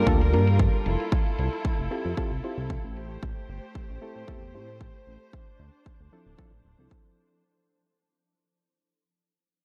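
A straight 4/4 nu-disco groove at 114 BPM is driven by a punchy, overdriven electronic kick sitting up front, while a very quiet electronic hi-hat, re-recorded in a large room like the kick, ticks underneath. A glossy, retro synth bass mixes pulse and sawtooth tones with a filter pluck and chorus, sounding mellow yet prominent and breathing with sidechain pumping until it drops out at 6.9 seconds. A reedy, worn electric piano, slightly out of tune and heard through its built-in speakers, plays an accompanying part with a touch of delay. Beneath it all, a dark, veiled, muted string section holds sustained bowed chords with vibrato, roughened by vintage 12-bit sampler grit and also breathing with sidechain pumping. The harmony moves through Gm7, Fmaj7, Am7 and Dm7 in a light digital ambience, giving this short, fading fragment of a longer piece a sensual, sleek mood.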